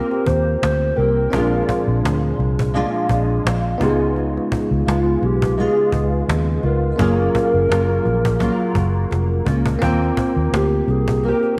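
Bathed in a moderate echo-chamber reverb, this sunny, nostalgic indie and bedroom-pop excerpt at 85 BPM in Eb major sets a warbling, detuned square-and-sawtooth lead with subtle chorus and tape echo over a bell-like, barky tine electric piano, an up-front, thumb-plucked nylon-string guitar with finger squeak, ensemble chorus and vibrato, a round, punchy, foam-muted electric bass, and a woody cajon struck with hard hands that plays a fill from 9.1 to 9.8 seconds, while the chords move from Eb6 through Bb7, Db7 and Gbmaj7 back to Eb6.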